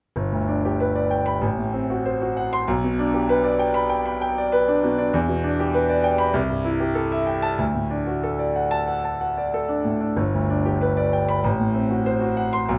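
The sound is open and up front, with a light reverb around a solo concert grand piano whose tone rings clear and whose low register carries a deep bass. It is a sparkling, brilliant classical piece, a virtuoso piano study heard as a short section cut from a longer work. The piano plays alone from 0.2 to 12.8 seconds, spanning G1 to C6. The time is in four, but the feel is rubato, so the pulse stretches and gives with the phrasing. The harmony begins on G, passes through F#dim/A and G/B, settles onto Em7 at 5.1 seconds, and moves through Am7/C to D before returning to G and F#dim/A.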